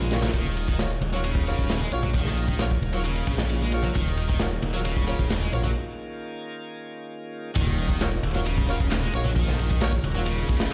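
A bright, lightly overdriven tonewheel organ with key click and slow rotary holds sustained Ebm9 chords very quietly beneath a double-tracked, distorted guitar riff with dub echo, a thick, menacing detuned saw bass up front, a background analog drum machine with handclaps and hi-hat, and close, dry congas. Almost at once a gritty, saturated breakbeat kit with dark cymbals and a tight kick drives this energetic, swaggering breakbeat cut from a longer piece, while a punchy horn section with light vibrato fires stabs through dub echo. After a break from 5.8 seconds, the drop lands at 7.6 seconds with a very quiet sub drop impact, all set in a large studio reverb that sounds like a big sound system in a bare room.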